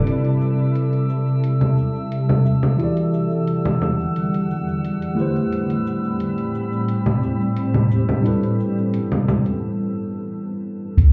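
Heard muffled as if through a wall with a club reverb, this blissful sunset chillout excerpt pairs a clean tine electric piano through a combo amp and digital delay with a shimmering, ethereal ambient pad and a glassy, drifting harmonics texture that drops out at 9.6 s, all over overdriven, layered electronic hi-hat, cabasa and congas, until a round sub bass and a deep, analog electronic kick arrive up front at 11.0 s.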